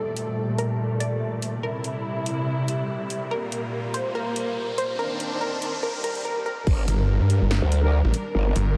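A detuned sawtooth pluck melody with analog delay opens over close, bowed studio strings pumping under a sweeping low-pass filter in G minor at 143 BPM, with a half-time swing, as a punchy layered electronic drum kit and an electronic riser build toward a heavy, aggressive wobble dubstep drop at 6.7 seconds, where a punchy kick, a growling, wobbling bass with distortion and chorus, and a snarling, saturated sawtooth bass enter, with a brief, mellow, distant brass stab, all bathed in a dreamy, reverb-soaked mix in this excerpt from a longer piece.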